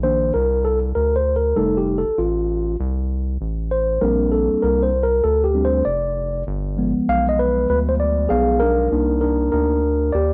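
Nocturnal and cool, this short jazz-hop passage cut from a longer hip hop piece moves at an unhurried 98 BPM in 4/4, with a 62% swing on the sixteenths that gives it a loose, late-night sway in C dorian. A mellow tine electric piano sits up front and carries the lead, playing a solo across the whole 10.3 seconds, its clean, direct tone colored by a cassette tape effect. Beneath it, a round analog bass holds down the low end from start to finish, deep and sustained with a fast attack and an evolving character blending square, sine and wave-folded shades. The harmony drifts from Cm9 through F7, Bbmaj13 and G7b9 before returning to Cm9 as a new section begins at 8.9 seconds. A moderate spring reverb and the intimate feel of a home cassette recording wrap the pair in a soft, lived-in space.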